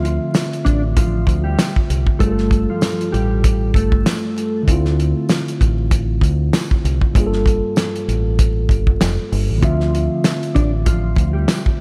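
Boom-bap hip-hop at 97 BPM in D minor, reflective and gritty with a swung 16th feel, where a cloth-damped, thuddy drum kit with a fat snare and tight kick sits up front beside a deep, round dub bass, while a mellow tine electric piano comps on Dm9, Gsus2 and Gm9 chords, a dark, compressed electric guitar with analog chorus and diffuse ambient delay plays the melody until 4.6 seconds and returns at 9.6 seconds, a jingly tambourine sits in the background, and vinyl crackle runs throughout this short cut from a longer piece.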